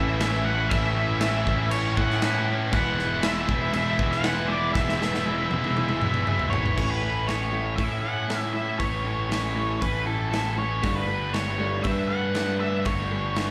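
Bittersweet and cathartic, this short cut from a longer quiet-loud alternative rock piece moves at a straight 4/4 pulse and sounds like a live club gig heard through the venue's PA, with light club reverb around it. An octave-fuzz lead guitar carries the dark melody throughout, its tone distorted and given a slapback echo. Beneath it, a bright, tight distorted guitar riffs across the whole passage with its own slapback echo, while two very quiet distorted riff guitars, one double-tracked, fill out the first half before dropping away at 6.8 seconds. A round, up-front fuzz bass drives the low end with overdrive, and a big acoustic drum kit with a punchy kick, medium-tuned snare, bright cymbals and toms enters at 0.2 seconds, rolling into a fill from 4.8 seconds. As the second section begins, a slightly broken-up, lo-fi guitar through a small old amp takes up arpeggios in the background with slapback echo, as the chords move from A and Eadd9 to A and Gadd9.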